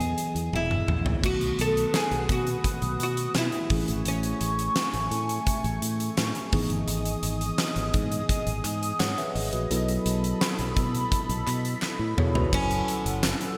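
A 1980s-style pop passage with a nostalgic, dramatic mood opens on a huge arena drum kit, fat-snared and up front under gated reverb, together with a mellow tine electric piano, a growly fingered electric bass and a bright, woody oud carrying the melody through digital delay. A drum fill leads in at 0.5 seconds, and at 1.2 seconds a swirling, detuned analog pad enters with phaser and chorus, holding sustained chords with a slow attack and long release. The oud, plectrum-plucked with doubled strings, sings over chords moving from Emaj7 to B7 and Amaj7 before falling silent at 6.5 seconds, while the punchy kick, tambourine and toms keep the groove steady. From 7.6 seconds a very quiet group handclap adds a crisp, close accent, and a second drum fill ushers in a brief return of the oud over F#m7 near the end. A moderate lush hall reverb and bright digital production give the piece a spacious, polished sheen, and it is cut from a longer piece.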